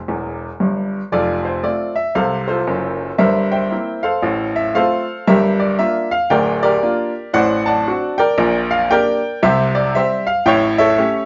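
A brief club-room reverb surrounds this recording, its top end stopping at 7.5 kHz, while a solo upright piano sits up front with a brilliant, woody tone and short sustain. It's a playful, exuberant stride jazz piece in F major at 116 BPM in 4/4, swung on the eighth notes, and it is cut from a longer piece. The piano opens with a fill over a C chord before settling into the main passage at 1.1 seconds. The harmony moves from F through C7/G, F/A, Gm7 and D7/A to Gm/Bb, C5 and finally A7. The playing covers a broad span of the keyboard, from D1 up to C6, with a natural sound throughout.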